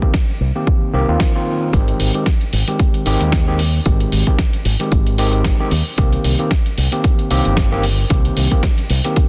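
An overdriven tine electric piano and a punchy, up-front electronic kick open this groovy, feel-good nu-disco excerpt at 0.0 seconds, the piano providing accompaniment through a combo amp with a gritty edge, slapback echo and sidechain pumping. A dusty, sampler-style soul kit joins almost at once, its compressed hi-hat and medium-tuned snare sounding tape-warm and re-recorded in a large room, with a natural pitch that sits close and present. At 0.4 seconds a bright fingered electric bass enters, direct and amped, shaped by an envelope filter and carrying sidechain pumping. The harmony moves from Cm7 to Abmaj7 and back to Cm7, over a swung sixteenth-note feel. A digital ambience surrounds the parts, and the dense, heavily limited modern master keeps the groove full and forward in this excerpt cut from a longer piece.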